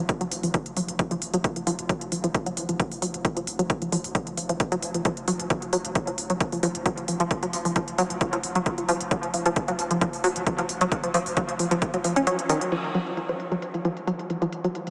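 A saturated sub bass opens this excerpt at 0.0 seconds, deep, thick and sine-like, with overdrive, a low-pass filter and sidechain pumping as it sits in the background of a dark, industrial slice of driving peak-time techno at 133 BPM in a straight 4/4, tuned to A4 = 439 Hz. A punchy, layered electronic kick drum arrives almost at once and stays up front until 11.9 seconds, joined by a techno drum kit with smooth hi-hats and crash cymbals, both softened by low-pass filtering. The lead is a tight, driving sequenced synth riff between Eb3 and Db4, a mellow, detuned sawtooth with a filter pluck, fast attack and sustained tail, coloured by chorus and tube saturation, pumped by the sidechain and trailed by a diffuse ambient delay. A filter sweep runs over this synth arpeggio throughout, and at 12.7 seconds the music moves into a new section built on a rootless Ebmadd9 chord, after the kick and bass have dropped away. 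The whole mix is soaked in a huge, dreamy reverb with a long 6.4-second decay, heard through a small-speaker sound.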